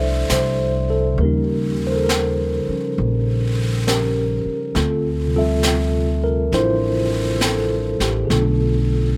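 Late-night and romantic, this brief jazz ballad excerpt drifts at 67 BPM with a gentle swing, as a mellow, clean tine electric piano sits up front over chords moving from Fmaj7 through Eb9 and Dm11 to Bm7b5, joined by a woody pizzicato upright bass and, from 0.3 seconds, an airy brushed drum kit with a high-tuned snare and hi-hat, all touched by light reverb.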